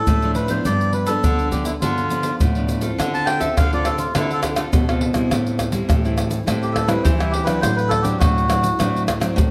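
A reedy, breathy melodica sits up front in this lively, playful samba-choro excerpt at 103 BPM, taking a solo from 3.0 seconds over fingerpicked nylon-string guitars (one with fresh strings and finger squeak, the other full-bodied on bass), while a tight surdo, egg shaker, pandeiro and tamborim drive the rhythm through Dm, G7, Dm7, Am7 and D7/A in a large studio reverb.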